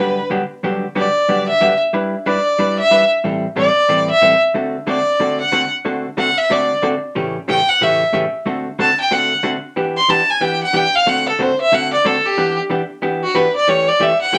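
A bowed fiddle and an electric hollow-body jazz guitar sound together from the opening moment of this playful, down-home country excerpt, cut from a longer piece and set in a swung 4/4. From 0.6 seconds the fiddle takes a solo that runs to the end at 14.4 seconds, its clear, focused tone carrying a light vibrato as a single player sits up front. The guitar supplies accompaniment throughout, picked with a dark, clean, compressed sound that also sits up front. Beneath them, the harmony moves through jazzy seventh chords such as Gmaj7, Am7, D7 and Em7 before closing on A7/E. A wet studio ambience with a short reverb surrounds the pair.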